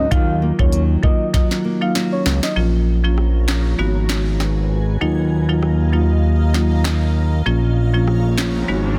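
A swung 98 BPM dancehall groove in Eb minor sets a hypnotic, sultry mood in this short cut from a longer piece, driven by an electronic afro-pop kit with a knocking kick, sharp snare, smooth hats, handclaps and rim clicks sitting up front, including a drum fill from 1.3 to 2.6 seconds. A fat, saturated, detuned sawtooth bass anchors the low end throughout, while a woody, close-miked marimba struck with hard mallets adds a bright, percussive accompaniment that pumps against the sidechain. At the opening, a soft, round octave-layered synth lead carries the melody with chorus and tape echo, alongside a small, fingerpicked nylon-string guitar playing arpeggios, and both drop away after about 2.6 seconds. From 2.8 seconds a cloudy, evolving granular pad drifts in underneath with slow-attack sustained chords, its own reverb and sidechain pumping, as the harmony moves through Bbm, Abm7 and back to Ebmadd9. 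A very quiet electronic riser appears in the final moments, and the whole is dry and densely limited with a modern sheen.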